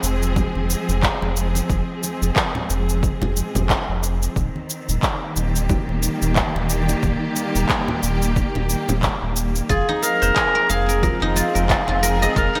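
A bright, 1980s-style digital production bathed in lush hall reverb frames this hypnotic, meditative organic downtempo excerpt, where a rich, distant string section holds sustained Fm and Eb chords over a round, deep analog bass with tube saturation, both pumping to the sidechain, while up-front gated-reverb shaker and handclaps, a punchy layered electronic kick from 0.4 seconds and hard-handed congas in the background keep a swung groove, until at 9.7 seconds a mellow, roomy solo clarinet melody and silvery fingerpicked guzheng arpeggios enter together with 12-bit sampler grit and delay.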